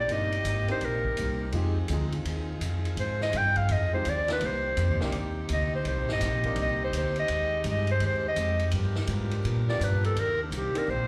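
At a brisk 167 BPM in 4/4 with a swing feel on the eighths, this sultry, dramatic big band piece in C minor is cut from a longer performance and heard as a live gig through the club's PA, with light reverb around it. A breathy clarinet carries the solo melody up front for the full 11.1 seconds, with vibrato, scooped notes, a smooth top and a slapback echo. Behind it, a tight saxophone section holds sustained chords with light vibrato, while a woody, thumpy pizzicato upright bass sits up front. A picked steel-string acoustic guitar plays accompaniment in the background, and a grand piano adds accompaniment until 6.6 seconds, then returns at 9.7 seconds, both carrying slapback echo. A distant, roomy drum kit swings on hi-hat, ride, snare and a punchy kick, with dark cymbals, as the harmony moves from Cm7 through Fm7 and Abmaj7 to a tense G7#9 before settling back on Cm7.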